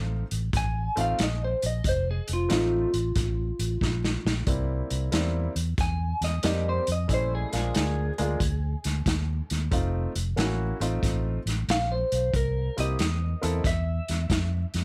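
A light reverb frames this soulful, laid-back electric blues shuffle at 92 BPM, cut from a longer piece and moving from F7 through C7 and Bb7. A muffled, lo-fi vintage drum kit with a punchy kick sits up front beside a dark, round fingered electric bass, while an intimate, woody upright piano with audible action noise accompanies from the start until 13.6 seconds. Entering at 0.6 seconds, the slightly broken-up electric guitar carries the melody through a small old amp with phaser, and a drum fill arrives at 3.8 seconds along the way.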